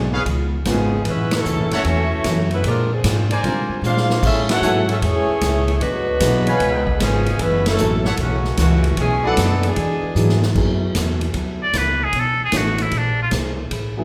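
A clear, smooth-topped saxophone section carries the melody from the start of this sultry, brassy big band swing excerpt, joined by trombones on a second line, soft-attack trumpet stabs, a full-bodied fingerpicked steel-string acoustic guitar, a woody, thumpy pizzicato upright bass, a swinging drum kit with dark cymbals and a punchy kick, and a mellow grand piano entering at 0.7 seconds. Band accents and short drum fills punctuate the passage, all played live in a large, reverberant studio room. The saxophones and trombones stop at 10.4 seconds, and a brilliant, nasal trumpet with a straight mute steps forward for a solo from 11.6 seconds before the recording is cut off.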